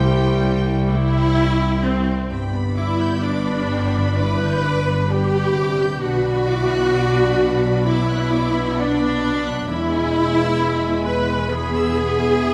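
Moving and tender, this rubato cinematic film score excerpt in G major at 65 BPM sets a distant, vibrato-rich violin melody over a darker portamento violin line, a mellow flute heard only until 1.3 s, a very quiet clarinet, an up-front expressive viola section, punchy French horn chords, ringing harp arpeggios, and a bass of focused cellos and woody double basses, all bathed in moderate scoring stage reverb as the chords move from Cadd9 through G and Bm to E.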